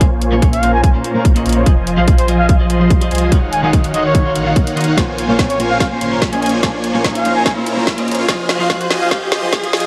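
Future bass at 145 BPM in a half-time feel, this dreamy, lush passage in Bb minor is cut from a longer piece and plays as a build-up, with a filter sweep running across the supersaw chords throughout. Those huge, detuned sawtooth chords sit up front carrying the riff through a low-pass filter and sidechain pumping, moving from Bbm9 through Fm7 and Ebm9 and back. A trumpet with a bucket mute enters at 0.5 seconds with a veiled, breathy melody, its soft attack, vibrato and intimate, whispered tone touched by dub echo and pumping. Beneath it, a saturated sub bass with a thick, triangle-like body pumps in the low end, while a twangy, clean electric guitar stays in the background with harmonic tremolo and dub echo. A hard-clipped electronic kick drives hard up front, joined by a trap kit of woody snare and metallic hats that rolls into a drum fill from 5.0 seconds, as a very quiet riser creeps in from 3.0 seconds. 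The dark, high-pass-filtered production carries light reverb and digital ambience.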